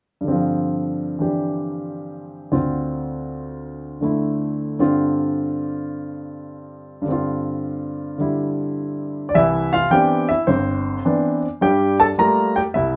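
Relaxed and swinging, this short solo jazz excerpt at 106 BPM in 4/4 features a woody, intimate upright piano with audible action noise, polished and up front, moving from G7sus4 and Dm7 into a new passage at 9.3 seconds on Cmaj9 and Gm9, all set in a moderate club reverb heard from further back in the room.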